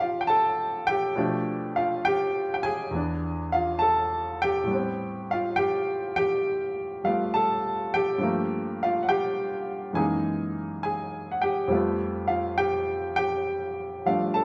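Relaxed and unhurried, this short cut from a longer solo jazz piece features a clear, natural-toned baby grand piano sitting up front with short sustain, swinging gently in 4/4 through warm extended harmonies such as Bm7b5, Am9 and F#13, all set in the lingering reflections of a stone room.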